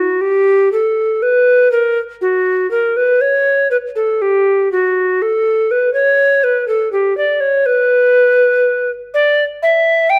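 Close, detailed microphones catch a faint mains hum and the moderate reverb of a recital hall, placing a hollow, woody tenor recorder up front. This is a short cut from a classical, baroque-style fantasia in B minor for unaccompanied recorder, played with rubato around 61 BPM in 4/4, and its mood is radiant and flowing. The solo line spans F#4 to G5 across all 10.2 seconds, with a pure tone, vibrato, and tongued notes that bring out a chiff.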